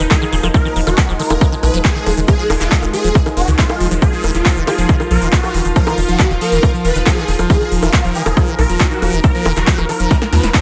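A swarming, detuned rave lead with chorus, phaser, tape echo and sidechain pumping drives this intense, alien psychedelic trance excerpt over a punchy, up-front electronic kick, a deep round analog bass, a squelchy liquid acid bass riff, a bubbling stepped-filter chord texture, a warbly lo-fi tape-like pad in the background, a grainy egg shaker and an overdriven big-room drum kit of crisp hi-hats, snare, handclaps and bongos, with a very quiet resonant blip pluck flickering in from 4.7 to 5.9 seconds and a drum fill closing the excerpt from 10.1 seconds.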